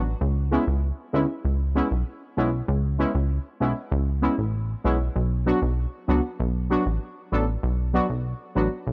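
Dancehall at 97 BPM in 4/4 with a straight feel, this short cut from a longer piece sits in C# phrygian and carries a hypnotic, tough mood. A plucky analog bass holds the low end from 0.0 to 8.9 seconds, its punchy, funky sawtooth and square wave tone shaped by a filter pluck with a fast attack that then decays, placed up front. Above it, a synth brass stab plays the accompaniment from 0.0 to 8.7 seconds, brassy and nasal, with the same filter pluck, fast attack and decaying tone, and a chorus effect thickening it. The harmony moves from C#m7 to Bm at 5.2 seconds. A digital ambience surrounds the parts, and the recording has a worn, warbling cassette character with a drifting pitch that gives the groove an aged haze.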